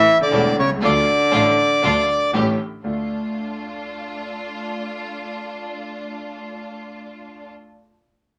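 A sultry, passionate tango fragment in D harmonic minor opens with a reedy, up-front bandoneon melody over a dark, pure cello line played sul tasto, while a smooth, vintage-toned grand piano and a rich studio string section playing stabs fill in beneath, all in a rubato feel around 119 BPM. The bandoneon and cello fall away at 2.3 seconds, and the biting, earthy bowed double bass stops at 3.1 seconds. The piano's deep bass and the strings' even, lightly vibrato-tinged stabs carry the rest to 7.5 seconds, all set in a wet small room.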